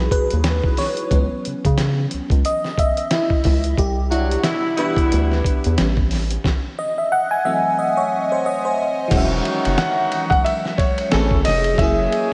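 Smooth and warm, this neo-soul R&B passage, cut from a longer piece, rides a swung groove in 4/4. An FM electric piano layered with a soft pad carries the chords and takes a featured solo over the first 9.1 seconds, its lush, detuned tone colored by chorus and phaser. Beneath it, a round analog bass sits up front with a deep, nasal tone. A gritty, compressed sampler-style drum kit, re-recorded in a small room, supplies a thumpy kick and fat snare alongside hi-hat, ride and crash cymbals. A distant, roomy horn section enters at 4.1 seconds with jazz-style stabs trailed by diffuse ambient delay, and a concert grand piano with a natural tone and subtle chorus picks up the melody at 9.8 seconds. The harmony drifts through rich extended chords such as Emaj13, Cmaj9 and Emaj7#5, and a moderate, lush hall reverb soaks the mix in a dreamy haze.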